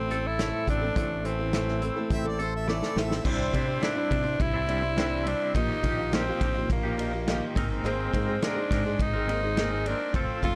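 A hopeful, open-road folk and heartland rock excerpt at 104 BPM, where a raspy, forceful tenor saxophone carries the melody up front over a woody, picked ladder-braced acoustic guitar, a twangy electric guitar riff with tremolo, a bright fingered electric bass and a natural country drum kit with dark cymbals and a punchy kick, a soft-attack harmonica adds a brief second line from 2.1 to 3.3 seconds as a drum fill leads into the new section, and the chords move from Am through Cadd9 and Ebadd9/Bb to Abadd9 in a dry, gritty mix.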